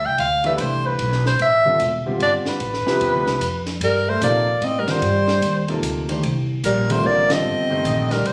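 A clear soprano saxophone carries the melody up front from the start, shaped by vibrato and scooped notes in a jazz style. This is intense, cool modal jazz in C dorian at 149 BPM in 3/4, swung on the eighths, and cut from a longer piece. An upright bass plays pizzicato with a woody, thumpy sound on steel strings, while a compact cocktail drum kit sits low in the mix, dry, with dark cymbals across hi-hat, ride and a high-tuned snare. A baby grand piano comps with an intimate, natural tone, short sustain and audible action noise. At 3.8 seconds a breathy alto saxophone with light vibrato and a smooth top enters as a second line, just as the harmony moves from Dm9 to Cm9. The band hits an accent at 7.2 seconds, and the recording sounds as if captured on a phone in the room, with moderate studio reverb and compression.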